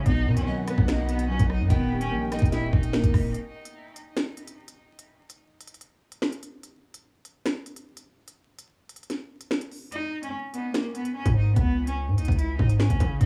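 A distorted 808-style bass hits hard up front, heavy and aggressive with a fast attack and decaying tail, anchoring this ominous, dark drill excerpt at 146 BPM in a half-time 4/4 feel. The electronic drill kit sits just as forward, with a knocking kick, sharp snare, crisp hi-hats, rim clicks and finger snaps running throughout. Over the opening chords of B and D#, a distant bowed cello carries the melody with vibrato, portamento and tape echo, supported by a mellow, vintage baby grand piano with short sustain and a lush, woody string section playing sul tasto in the background. A bamboo pan flute adds an airy second line with a crisp chiff and tape echo, briefly floating behind the others. At 3.3 seconds the track breaks down, and once the piano fades at 3.4 seconds the drums carry on alone until the cello returns on G#m at 9.9 seconds, with the kick dropping out briefly and the bass rejoining at 11.3 seconds. 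The echo-heavy mix, with vinyl crackle and small room ambience, gives the whole piece a dusty, shadowy character.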